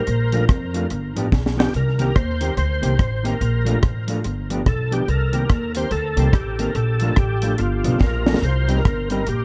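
Ska at 143 BPM in C dorian with a swung, mischievous and driving feel, this short cut from a longer piece sets a gritty, overdriven tonewheel organ melody with chorus vibrato, slow rotary speaker and tape echo over a woody pizzicato upright bass and a dry, up-front deep reggae drum kit with a high-tuned snare, tight kick and tape echo, while a clean, fingered electric guitar adds dark accompaniment with its own tape echo inside a small room reverb and a warm production, with drum fills at 1.3 and 8.0 seconds.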